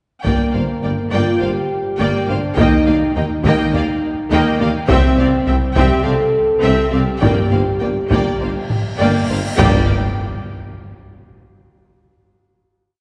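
Heroic and dramatic, this epic orchestral film score in G minor moves at 103 BPM as clear and rich violin sections and a rich viola section drive a bowed ostinato over mellow French horns, a dark tuba, warm cellos and woody double basses, while hard-stick taiko strokes pound throughout, round timpani join at 7.2 seconds, and a huge, dark cymbal swell rises into a low impact at 9.6 seconds for the final chord, all heard from further back in a reverberant concert hall.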